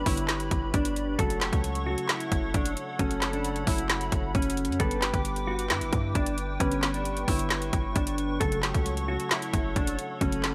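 Up front sits a hard-hitting electronic trap kit, entering at 0.1 seconds with a hard-clipped kick, woody snare, metallic hi-hats and handclaps, all carrying a tape-warm sheen. This short cut from a longer hip hop and trap piece moves with a half-time feel and a dark, menacing mood. Beneath the drums, a punchy 808-style bass with a sine body and a noise layer hits with a fast attack and decays heavily. A clean, fingered, compressed electric guitar carries the melody through a lush chorus and a low-pass filter, while round, gentle electric-piano-like synth keys add plucked, decaying accompaniment with chorus of their own. A hollow, flute-like pad holds detuned sustained chords far in the background under an ensemble chorus, as the harmony shifts between G and F# minor under light reverb.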